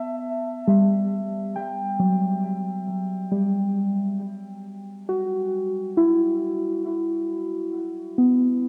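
Reflective and serene, this short ambient fragment, cut from a longer piece, features muted, felt-like synth keys playing alone, their soft, dark, intimate tone sitting up front with chorus and a diffuse ambient delay, all soaked in a long plate reverb with a dreamy cassette-tape haze.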